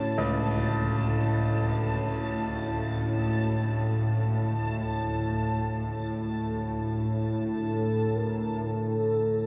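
In free time, this dark ambient drone cut from a longer piece settles into an unsettling, ominous stillness, tuned to A4 = 442 Hz and resting on A before moving to D5 at the close. Up front, a tense, string-like bowed drone holds the low register with a detuned sawtooth edge, ring modulation and vibrato, while a deep, moody analog pad sits in the background with chorus and shimmer reverb, sustaining chords as it fades out until 8.7 seconds. High above, a reversed, granular texture swells on a single A5, dreamy and bright. A bright concert grand piano sounds arpeggios anchored on a deep C#2, trailed by delay and shimmer reverb, from 0.2 to 8.7 seconds. At 7.6 seconds a mellow, horn-like synth lead enters with a round, warbling vintage tone, sweeping filter and vibrato, tracing a brief melody between A4 and Bb4. A wet cathedral reverb with a 6.6-second tail surrounds the dark, warm production.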